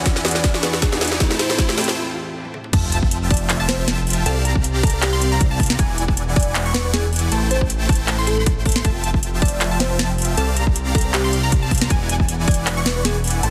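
A dense, heavily limited modern mix with light reverb carries this bright, playful half-time future bass cut at 157 BPM in F major, where a soft felt-muted upright piano, an airy breathy pad and a riser with sub drop fill a short build-up and drum fill before the drop at 2.7 s brings in a thick, detuned analog bass and a punchy unison pluck, joining huge phased supersaw chords, a sparkling bell-like FM electric piano melody, a hard-clipped overdriven kick and an up-front trap kit with sharp snare and metallic hats, while the bass, supersaw, pluck and electric piano pump against the sidechain.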